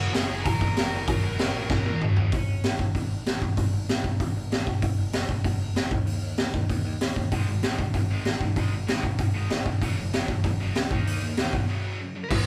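This angry punk rock cut from a longer piece at 192 BPM features a raw garage drum kit, its high-tuned snare, punchy kick, crash, hi-hat and toms sounding gritty and up front through a drum fill at 1.7 s, while a dark high-gain lead guitar carries the melody, a bright double-tracked distorted guitar drives the riff before returning at 7.3 s, and a growly overdriven picked bass rumbles in the background, all played live in one room with little reverb.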